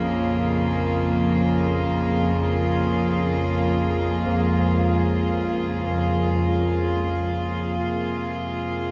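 This ominous, cavernous ambient passage opens at once with a rich symphonic cello section, bowed sul tasto with a soft attack and held up front in sustained chords over Bbm7. Beneath it, a deep, rumbling drone of triangle and sawtooth tones sits dark in the background, its slow attack and long release thickened by analog chorus and its own reverb. Very quiet carillon bells ring through in arpeggios, their bronze, close-miked tone dry and full against the surrounding haze. At 7.8 s the harmony shifts to Fm, and a barely audible wind-like texture of breathy, airy noise drifts in. The whole mix floats in free time, soaked in a huge, dreamy reverb that gives this short excerpt a vast, cave-like depth.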